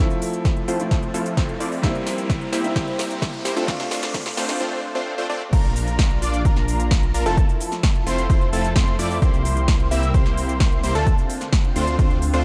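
Festival progressive house at 130 BPM in F major, this triumphant, anthemic excerpt opens with a build-up where a clear concert grand piano plays accompaniment with delay and sidechain pumping, alongside a lush, chorused and phased pad sitting bright in the background. A punchy, detuned supersaw stab carries the riff through a filter sweep, while a thick, menacing detuned saw bass with a saturated edge anchors the low end and a background riser runs from 0.3 to 4.6 seconds. A big-room dance drum kit with a punchy snare, crisp hats, cabasa, toms and crash cymbal plays fills through the build, and an up-front electronic kick enters at 0.5 seconds. At 5.5 seconds the drop arrives, the piano stops and a bold, dark unison lead takes over with high arpeggios marked by vibrato and a moving notch. The chords cycle through Fmaj7, C7, Dm7 and Bb, and light reverb sits over the dark, warm production.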